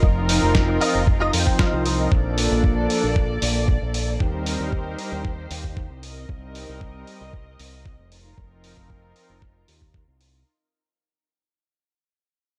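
A thumpy, up-front electronic kick drives this groovy, sunny nu-disco cut at 115 BPM, joined at 0.3 seconds by a gritty, tape-toned sampler-style soul kit of snare and hi-hat, while a fingered electric bass with an envelope filter grounds the low end. A bright, twangy clean electric guitar riff, treated with ensemble chorus and analog delay, adds a fill from 1.1 to 2.1 seconds before dropping out. A detuned sawtooth pad with chorus, cassette tape colour and delay and a veiled, con sordino string section pump through F7sus4, Bbmaj7, Eb6 and Cm7 chords, all inside a digital ambience as the excerpt fades out.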